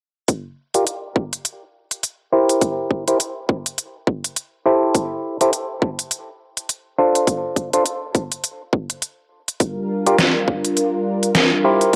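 A swung 103 BPM glitch hop groove in 4/4 sets a gritty, playful tone in G dorian, with a punchy, tape-warm electronic kick and a dubstep kit of deep snare and crisp hats driving from 0.3 seconds, twangy, stringy clav stabs pumping through tape echo and a combo amp from 0.7 seconds, and a smooth, detuned sawtooth pad with chorus arriving at 9.6 seconds over a Gm, C7, Am7, Dm7, Gm7 progression, all bathed in wet spring reverb with the character of a home cassette recording.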